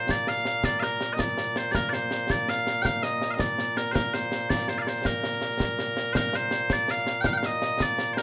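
Scottish traditional pipe music in a straight 6/8, this short cut from a longer piece carries a proud, stirring mood. Loud bagpipes carry the melody from the very start, their bright, piercing tone sounding continuously and standing up front as the solo voice across a range from Bb2 to G5. Concert snare drum and concert bass drum join at 0.1 seconds, acoustic, close and dry, with dark cymbals adding shade beneath the pipes. The tune states its opening phrase and then begins it again at 6.1 seconds before the clip ends. A light reverb and a rough home demo mix give the recording an unpolished, direct feel.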